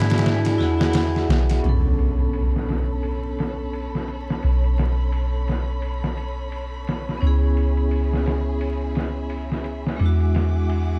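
Smoky and dark, this trip hop excerpt moves at 86 BPM in B dorian with a swung sixteenth-note feel, its dark, vinyl-crackled production set in a digital ambience. A bright, overdriven slide guitar sounds a brief E4 melody with tape echo in the first 1.2 seconds, while a metallic, ringing vibraphone with hard mallets, treated with tremolo and tape echo, accompanies alongside lush, bowed violin section chords with expressive vibrato. Up front sit a deep, round 808-style sine bass and a gritty, pitched-down sampler drum kit with filtered ride and snare, and an electronic impact sounds in the background from 1.6 to 4.4 seconds as the chords move from E9 through Bm9 and C#m7.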